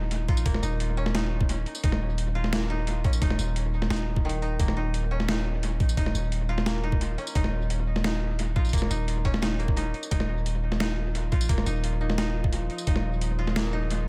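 Woody, fingerpicked koto arpeggios with a 12-bit sampler grit and dub echo open this dark, spacious half-time drum and bass excerpt, over a deep, sine-toned 808-style bass that sits up front. A gritty, compressed boom bap kit of hi-hat, high-tuned snare and tambourine, carrying its own dub echo, is soon joined by a knocking, tape-warm electronic kick. After a brief break at 9.8 seconds, an eerie, metallic FM drone with chorus and reverb creeps in far behind from 11.0 seconds in a dry, echo-heavy mix.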